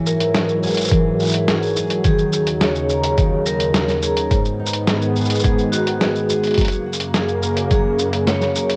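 A detuned, warbling sawtooth pad and a full-bodied fingerpicked steel-string acoustic guitar with audible finger squeak open this intimate, autumnal folktronica piece in G# minor at 106 BPM, joined by a bright, ringing vibraphone with analog delay carrying a second line over the Eadd9, D#m7, G#m and F# chords, while a muffled, pitched-down sampler-style kit of hi-hat, shaker and snare sits up front and a thumpy electronic kick enters at 0.9 s, the whole captured as a home cassette recording with light reverb.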